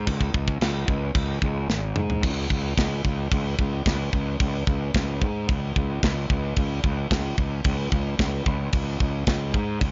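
A growly, fuzz-drenched fingered electric bass sits up front from the start of this relentless, aggressive heavy metal fragment, riding alongside a tight, warm acoustic drum kit of kick, snare, toms, crash and china cymbal that breaks into a fill at 1.7 seconds before the music shifts into a new section at 2.2 seconds, all in a dry, close studio sound with a dull, rolled-off top end.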